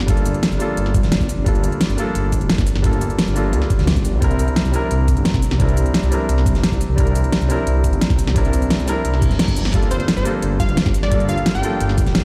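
A warm grand piano, a detuned sawtooth bass and a tape-warm drum kit open this dreamy, rolling liquid drum and bass excerpt together, with a knocking electronic kick joining almost at once. The groove runs at 174 BPM in a straight 4/4 in G dorian, moving from Gm7 to C7 and back to Gm7. The polished piano plays with a short sustain through a digital delay, while the bass is menacing and evolving, with a filter swell over its sine-reinforced low end. The pop kit sits up front, with a fat snare, crisp hi-hats and shaker layered over the kick. A reverse cymbal leads at 9.2 seconds into a punchy, catchy plucky lead at 9.9 seconds, full-bodied yet mellow, with a sub octave, a noise layer, a filter sweep and its own delay. The mix carries light reverb and digital ambience, with the feel of a big sound system playing in a bare room under large studio reverb.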